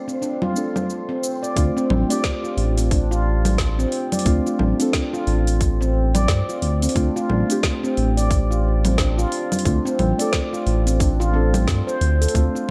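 Meditative and mystical, this organic downtempo piece moves at 89 BPM in 4/4 with a 16th-note swing, rooted in D minor pentatonic over a Dm7 chord. For the first 1.6 seconds, muted, felt-like synth keys and handpan arpeggios float over a very quiet, breathy wind-like texture, while an afro-pop kit of congas, shaker, a woody snare and metallic hi-hats sets the groove. At 1.6 seconds the wind drops out and a smooth, gliding synth bass enters up front, joined by a tight, tape-warm electronic kick. The handpan sits forward with a ringing stainless-steel tone and sharp finger strokes, its notes trailed by delay. The soft, full-bodied keys are coloured by chorus, delay and sidechain pumping, and a light reverb adds a touch of space. This passage is cut from a longer piece.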